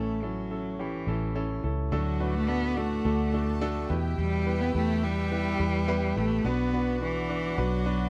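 Piano-driven pop at 106 BPM in D major, uplifting and anthemic, cut from a longer piece, where a focused solo cello with vibrato and a slapback echo carries the bowed melody over a deep, short-sustained concert grand and a round, punchy, foam-muted electric bass, joined at 1.9 s by an earthy, lightly vibrato violin section on a second line and a nasal, reedy gut-string chamber ensemble holding sustained chords in the background, all captured in a dry, close 1970s-style studio sound with light reverb.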